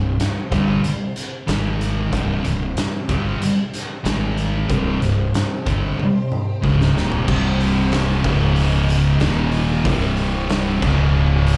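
A straight 4/4 pulse at 93 BPM drives this sludgy, hypnotic stoner and doom metal excerpt in C phrygian, anchored by an oversized, low-tuned acoustic drum kit with a boomy kick, dark cymbals and a gritty, pumping room sound that enters at 0.2 s and rolls through a fill from 6.0 s. Two thick fuzz guitars grind out the riff over C and Ab chords, one carrying slapback echo, while a round, punchy fingered bass adds overdriven weight beneath and a very quiet, shimmering vintage string machine holds sustained violin chords with slow attack and ensemble chorus. At 7.3 s a bright, double-tracked distorted guitar joins as the riff moves through C, Db and Eb, and the whole performance comes across as a live gig heard through a club PA with light reverb.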